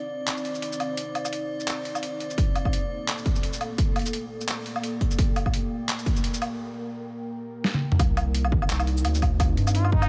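The rhythm moves in a swung, half-time drum and bass feel, cinematic and tense, in this short cut from a longer piece. A deep, dark ambient pad holds sustained Cmadd9 and Gmadd9 chords from the start, its detuned sawtooth body carrying chorus, reverb, 12-bit sampler grit and sidechain pumping while a filter sweep builds across the opening 8 seconds, and an eerie, metallic FM drone hangs beside it until 6.6 seconds. A compressed, pitched-down boom bap kit of handclaps, hi-hat, shaker, snare, toms and woodblock sits up front with a gritty edge, and a heavy electronic kick recorded in a large room joins at 2.4 seconds. After a brief break and a drum fill, the drop lands at 8.0 seconds as a thick, saturated sine sub bass pushes forward. In the final moments a brilliant plunger-muted trumpet enters with jazz-style wah-wah, vibrato and scooped notes, roughened by the same sampler grit. The mix carries light reverb and a rounded top end.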